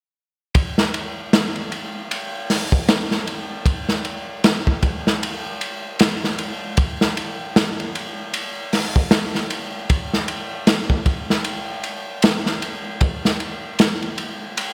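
Trip hop at 77 BPM in 4/4 with a 16th-note swing, this smoky, hypnotic excerpt features only a crunchy breakbeat drum kit playing from 0.5 to 14.7 seconds, its kick, snare, hi-hat and ride cymbal sitting up front. The kit sounds gritty and saturated, with a tight kick, a medium-tuned snare, dark cymbals and a rolled-off top, treated with gated reverb. A lush hall reverb and bright 1980s-style digital production frame the whole.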